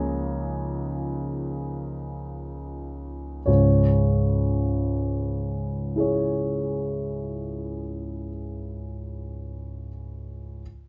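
Impressionist classical solo piano, wistful and nocturnal, unfolds here in a slow 6/8 with a free rubato feel. A concert grand carries the piece alone for its full 10.6 seconds, spanning from C#2 up to C#5, its tone clear and open with a deep bass register. The opening passage slows as it goes, lingering on a suspended chord over a C# bass before a second passage begins at 3.5 seconds and settles onto C# minor. Close, detailed microphones keep the instrument up front, while a light reverb adds a touch of space around it. This short fragment is cut from a longer piece, leaving the mood suspended in mid-thought.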